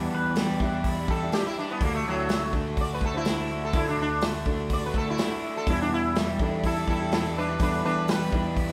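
Dusty and reflective, this short folk rock and heartland rock cut at 124 BPM in E minor moves from Em7 to D and back, with an up-front, buzzing sitar carrying the solo melody over its shimmering sympathetic strings. A bright, picked twelve-string acoustic sits in the background beside a dark, woody upright piano, while a double-tracked, overdriven garage guitar plays the riff and an amped electric bass holds the low end. A twangy pedal steel with tape echo slides in only from 0.1 to 0.8 seconds, a punchy, natural country drum kit joins at 0.4 seconds, and the band plays live together in a moderate stone room.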